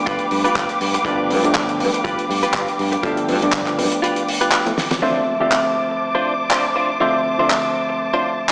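A barky, overdriven reed electric piano with tape echo and veiled, con sordino strings pumping under sidechain open this sleek, sensual nu-disco excerpt at 121 BPM in D dorian, joined by a clean, direct-recorded electric guitar riff through analog chorus and a low-pass filter. A damped 70s kit with a fat snare, hi-hat and handclaps sits up front over a tight, dark kick, while a growly fingered bass and a distant cowbell with egg shaker and group handclap drop out just before 4.0 seconds. A drum fill and band accent around 4.8 seconds push the groove from G7 to Dm7 at 5.0 seconds, all heard through a lush hall and a stone room as if on a big system with a small-speaker edge.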